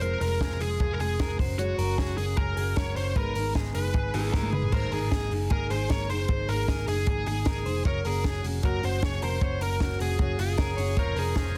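A dark, overdriven lead guitar carries the melody through this nostalgic, breezy jangly indie pop excerpt at 153 BPM, over a fingerpicked steel-string acoustic guitar with audible finger squeak, slightly broken-up lo-fi arpeggios from an electric guitar through a small old amp, a round, foam-muted picked electric bass, and an up-front, dry cocktail drum kit with a punchy kick, high-tuned snare and dark cymbals that plays a fill at 4.3 seconds, while a reedy combo organ slips in at the back at 11.0 seconds, all in a small room and a dense, heavily limited master.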